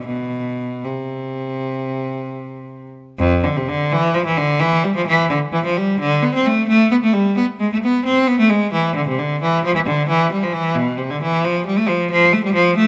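Close, detailed microphones and a moderate concert hall reverb frame this introspective, flowing excerpt of a baroque-style classical suite movement in 12/8, where a single up-front bowed cello, rich and intense with vibrato and a smooth top, plays alone from F2 to C4 across 12.9 seconds at a rubato 69-91 BPM counted in dotted quarters.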